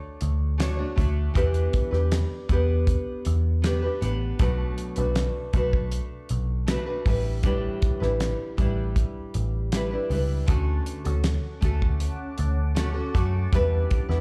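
Sunny and laid-back, this indie bedroom-pop excerpt heard live through a club PA opens on a fingerpicked nylon-string guitar with a deep classical tone, bathed in lush chorus, warbly pitch drift and slapback echo over jazzy seventh and suspended chords. A dark, round, foam-muted electric bass and a dry, damped 70s drum kit with a fat snare and tight kick join almost at once and sit up front in the small room. At 11.3 seconds a faint, ethereal pad rises with an octave-up granular shimmer, phaser and chorus.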